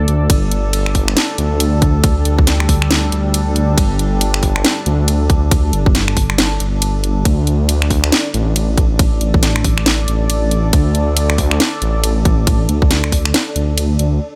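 Dark and cavernous, this deep dubstep excerpt sits in a half-time drop with a swung sixteenth feel, built on a deep, moody ambient pad whose detuned, wave-folded, ring-modulated chords arrive with a slow attack and linger under chorus and reverb. Up front, a rumbling detuned saw bass beats beneath, while a tape-warm garage kit brings finger snaps, hi-hat, ride cymbal and a cracking snare. A tight electronic kick enters at 0.3 seconds, all set in a digital ambience.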